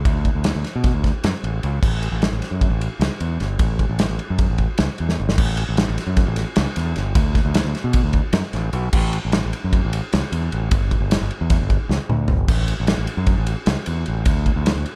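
Wistful and playful, this short math rock and midwest emo excerpt runs at a brisk 304 BPM in eighths, counted in an odd 9/8 with a straight feel. A growling, fingered electric bass, bright and overdriven, sits up front beside a loose indie drum kit with a punchy kick, medium-tuned snare, dark cymbals, splash and toms, heard in a small room. The dry, dark production moves from an opening section into a second at 5.4 seconds, marked by drum fills at 5.1 and around 12 seconds.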